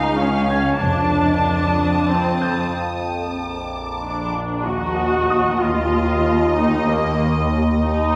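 A cinematic suspense score with a mysterious, ominous mood moves at 94 BPM in 3/4, settling into Eb minor from 4.7 seconds in this short cut from a longer piece. A muted violin section carries the melody, veiled and dark with vibrato, over an up-front con sordino viola section and a lush, bowed cello section holding the bass. Beneath them a sawtooth-and-sine drone with moving overtones sustains throughout, colored by chorus, phaser and its own reverb, while a brilliant concert grand piano rings high in the background with long sustain. A second muted violin section adds soft-attack texture from 0.8 to 4.3 seconds, and a muted double bass section appears briefly at 0.8 seconds before returning at 4.6 seconds. A break between 2.7 and 4.7 seconds leads into the minor-key second half, all of it set in a wet scoring-stage reverb.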